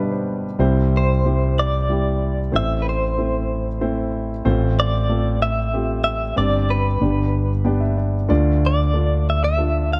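A bright, clean electric guitar, recorded direct with tremolo, carries the melody from 1.0 seconds in this nostalgic, hopeful acoustic folk-pop ballad in C major, moving at 94 BPM in 3/4. A warm grand piano opens the excerpt alone, its intimate tone touched by audible action noise, and a round, dark fretless electric bass joins at 0.6 seconds beneath chords that drift from C through Am, F/A and a Gsus4 resolving to G. The sound is close and dry, with all three parts up front.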